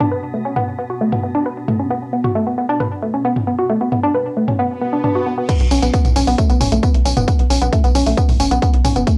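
Driving peak-time techno at 134 BPM in a straight 4/4, with an industrial edge, cut from a longer piece and captured as a home recording on cassette in a moderate studio reverb. From the start, a woody, wave-folded pluck carries the riff up front, its short, mellow decay thickened by chorus, tube saturation and analog delay and pumped by sidechain. Beneath it sits a swarming, detuned drone in the background, slow to attack and grainy with its own built-in reverb, while a punchy analog drum machine, overdriven and re-recorded in a large room, plays crash cymbal, hi-hat, tambourine and toms, with sidechain pumping on each. An electronic swell comes in at 4.7 seconds, and at 5.5 seconds the drone stops and the drop arrives with a heavy, layered electronic kick drum. A tight sequencer bass joins at 5.6 seconds, a pumping blend of sawtooth and square with a fast-attack filter pluck that drives the groove until 9.0 seconds.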